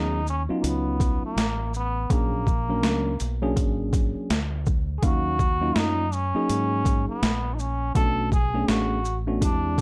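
A buzzy, breathy trombone with a metal mute carries the jazz-style solo melody up front in this cool, relaxed jazz-hop excerpt at 82 BPM with a swung sixteenth feel, over a worn, slightly out-of-tune tine electric piano, a round, dark fingered dub bass, and a gritty, overdriven, pitched-down boom bap drum kit with a thumpy kick and high-tuned snare that enters at 0.3 s, all moving through Bmaj9, A#7alt, D#m9 and Bm9 in a small, dark-toned room.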